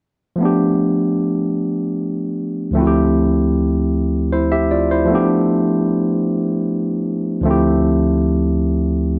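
Late-night and yearning, this R&B excerpt drifts in a straight 6/8 at 51 BPM counted in dotted quarters, as a barky tine electric piano, lightly overdriven through a combo amp and placed up front, alternates G9 and Dm11 chords from 0.4 to 9.2 seconds, spanning D2 to E5 inside a moderate echo chamber reverb.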